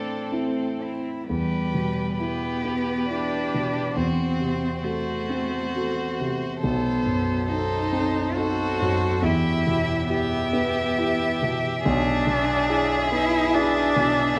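Melancholic and solemn, this slow romantic movement for piano quartet unfolds in E minor at 60-73 BPM in 3/4, with a rubato feel and tuning at A4 = 439 Hz. One violin carries the melody in a smooth, even, distant voice with vibrato, while a second, richer-toned violin and an expressive cello shape supporting lines, the cello bowing with soft attacks, vibrato and portamento. The concert grand piano sits up front as accompaniment, its polished, present tone reaching into deep bass. The harmony moves from Am to Em at 1.3 seconds, then passes through F#dim/E and B7b9 before returning to Em and settling on E7/B near 11.8 seconds. A wet recital hall reverb surrounds the ensemble, and vinyl crackle adds an aged patina to this fragment of a longer piece.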